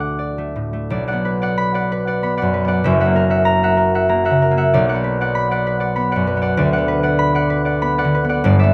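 The recording sounds close and detailed, with little reverb, so the concert harp sits up front and every ringing string is clear. This short cut from a longer classical piece for solo harp is graceful and serene, in B minor at 96 BPM in 3/4. The beats are uneven, and the rubato gives the phrases a gentle, breathing sway. The harp is acoustic and fingerpicked, with a warm tone spanning F#1 to D6 and tuned to A4 = 439 Hz. It opens on a D chord, and at 0.9 s a new section begins with harmony moving through Bm, F#7, back to Bm and then Bm/D. The harp plays alone for the full 8.7 seconds.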